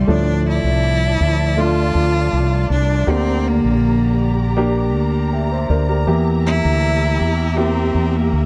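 Pop ballad in D minor at 80 BPM, an emotional, melancholic passage cut from a longer piece that moves from Dm to Gm to Edim. A single bowed cello carries the melody up front with clear, focused vibrato, while a polished grand piano accompanies and a string section holds sustained chords with expressive portamento and a smooth top. Beneath them a round, punchy fretless electric bass sits dark and direct, set in a dry, close small-room sound with a 1970s studio character.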